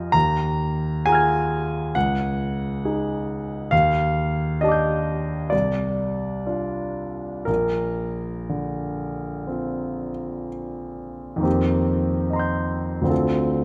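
Serene and dreamy, this short impressionist solo piano passage drifts in 4/4 with a rubato feel, its tempo easing between 58 and 74 BPM in Bb major and tuned slightly low to A4 = 436 Hz. A concert grand plays alone for the full 13.6 seconds, ranging from a deep bass Bb1 up to Ab6. Its tone is clear, intimate and polished, placed up front with long sustain and the sound of the action audible under the notes. Open, colourful harmonies float by: Ebmadd9 and Dbsus24, then Ebmaj7#11, Csus24 and a resting Bbadd9. At 11.5 seconds the music turns toward F9sus4 before settling on Dm7 as the excerpt, cut from a longer piece, comes to a close. A moderate scoring-stage reverb gives the piano a gentle halo of space.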